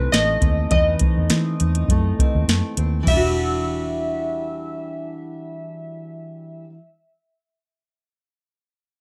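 Glossy, bright retro synth keys carry the melody up front with lush chorus and analog delay, their pulse-wave and wave-folded tones shaped by a filter sweep, in this lonely, mellow bedroom-pop excerpt at 102 BPM in E minor with a gentle 16th-note swing. Underneath, a full-bodied fingerpicked jumbo steel-string guitar, with finger squeak and chorus plus vibrato, sits alongside a round, foam-muted electric bass. A dry, tape-warm rhythm box with a deep kick, crisp snare and metallic hats plays until 3.2 seconds, just after the harmony moves from a rootless B7b9 to Em9 under light reverb.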